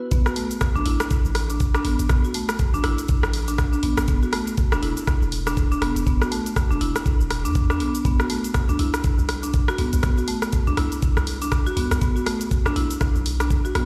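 A swung sixteenth-note groove drives this earthy, spiritual afro house drop, where a knocking, up-front electronic kick anchors a layered deep house kit of cabasa, rim click and dark, low-pass-filtered hats, while a deep, boomy 808-style bass and woody marimba arpeggios on padauk bars both pump against the kick, the marimba trailing tape echo, all ringing through a bare stone room as if played on a big sound system.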